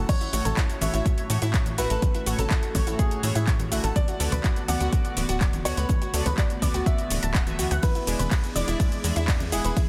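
Dreamy and bittersweet, this progressive house excerpt moves at 124 BPM in a straight 4/4, passing through A6, D6 and E7 chords over a tight, punchy sawtooth sequencer bass with sidechain pumping, an overdriven electronic kick sitting up front with large-room reverb, and a pop kit of metallic hats, crash, ride, handclaps and shaker alongside very quiet congas. A boxy grand piano carries the melody through digital delay and pumping, while a round, detuned analog pluck plays chorused arpeggios with a moving filter sweep and a glossy, retro polysynth adds stabs, both pumping and echoing. Further back in the mix, a very quiet, breathy pad holds soft, warbling sustained chords, and the dense, heavily limited master keeps only light reverb.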